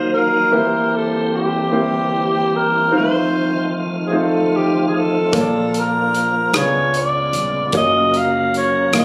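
A breathy, subtone alto saxophone sings the melody up front over woody upright piano, a lightly overdriven tonewheel organ with slow rotary speaker and chorus vibrato, and a very quiet, dark French horn section holding soft-attack chords in this slow, jubilant and soulful gospel piece at 50 BPM in 6/8. After the harmony has moved from Ebmadd9 through F7, a thumpy pizzicato upright bass and a polished studio drum kit with punchy kick, hi-hat and rim click join at 5.3 seconds on Bbmaj7, and the progression then continues on to Gbmaj7. The sound is roomy and lightly reverberant, like a phone capturing a club performance.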